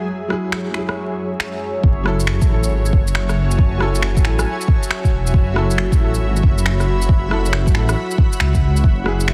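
A clear, woody upright piano with dub echo and a blurred granular cloud pad carrying vintage 12-bit grit open this melancholic, nocturnal future garage fragment in F# minor at 137 BPM with swung 16ths, both parts pumping from sidechain compression, as tape-warm rim clicks, finger snaps and shaker arrive at 0.3 seconds with soft clipping on the snare, and at 1.8 seconds a deep, up-front electronic kick and a menacing, detuned saw bass with a filter swell land on an F#m7 chord beneath a dense, heavily limited master dusted with vinyl crackle.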